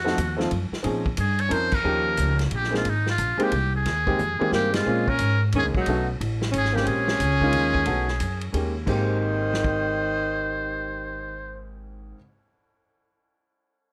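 A swinging 3/4 at 180 BPM drives this playful small-group jazz excerpt in Ab major, where a buzzy, thin muted trumpet carries the melody up front over clear grand piano with audible action noise, woody pizzicato upright bass and a vintage drum kit with a punchy kick, joined at 4.5 seconds by a breathy alto saxophone with scooped notes on a second line, with band accents at 1.7 and 4.7 seconds and light reverb.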